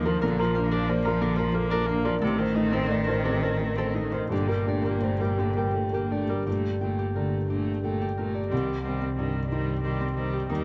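Neoclassical piano and strings in G minor, melancholic and fragile, moving at a slow, rubato 6/8 of 55-61 BPM in this short excerpt cut from a longer piece, with chords passing from Bb through Adim and Gmadd9 to Cm. A felt-muted upright piano carries the accompaniment with a soft, boxy intimacy and audible action noise, joined by a smooth, evenly bowed solo viola, while a solo cello sings a second line with vibrato and expressive portamento. A dark, up-front double bass anchors the low end with soft-attack bowing, and a mellow fingerpicked Celtic harp rings out arpeggios touched by slapback echo, all captured close and detailed in a dry room.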